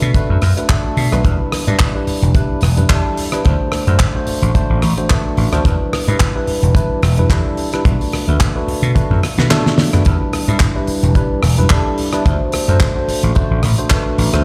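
A punchy, amped vintage slap bass sits up front in this sensual, groovy nu-disco excerpt with a lightly swung feel, joined by a tight, dry kick drum. A clean tine electric piano through a combo amp plays chords moving among Bm7, Em7 and D7, coloured by lush chorus, sidechain pumping and tape echo. A damped 70s kit adds a fat snare, hi-hat, rim clicks, handclaps, toms and a drum fill from 9.0 to 10.1 seconds, all heard through light small-room ambience, as if played on a big sound system in a bare room with large studio reverb.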